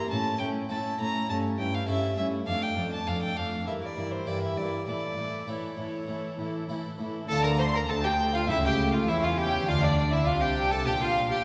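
A driving, dramatic stretch of a baroque-style concerto movement opens with a solo violin up front, its reedy gut-string tone carrying the melody over two chamber violin sections, one doubling the tune in the background while the other plays a second line with light vibrato. Beneath them, a viola section adds nasal, shadowy accompaniment alongside an airy, plucked harpsichord voiced on two sets of strings, and a cello section lays down a dark bass line from 0.1 seconds. The period-style bowing and steady straight pulse in 4/4 give the ensemble a taut, urgent momentum as the harmony presses through tense diminished colour. At 7.3 seconds a new passage begins and a double bass section joins, deepening the low end with a rich weight. The whole group sits in the lush wash of a concert hall, its long reverb lending the strings a spacious, ringing glow.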